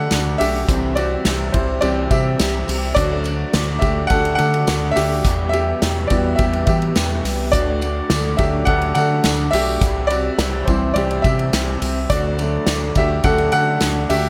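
Piano-driven pop at 105 BPM in D mixolydian, this hopeful fragment is led by a brilliant, woody upright piano that carries a featured solo across its full 14.3 seconds over a dark, slightly broken-up electric guitar riff with ensemble chorus, a round fingered electric bass, an acoustic drum kit with a punchy kick played with bundle sticks under dark cymbals, a jingly vintage tambourine and the glassy, ethereal sustained chords of a background glass harmonica, all set in moderate plate reverb with a bright 1980s-style digital sheen.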